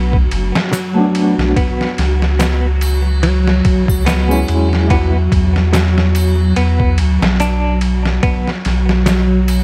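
A gritty, pitched-down sampler-style drum kit with a thumpy kick, medium-tuned snare and ride cymbal sets a swung 72 BPM groove in 4/4, overdriven and up front, while a deep, round sine sub bass anchors the low end and an egg shaker and triangle sit in the background from 0.7 s. In B minor, over Bm7, C#m, Esus2 and B5, a vintage string machine cello patch holds full-bodied sawtooth chords with ensemble chorus, a clean picked electric guitar plays compressed arpeggios through tremolo and digital delay, and a mellow, fingered electric guitar adds accompaniment with tremolo and tape echo until 5.1 s. This dark, cinematic trip hop fragment, cut from a longer piece, is wrapped in light reverb and vinyl crackle.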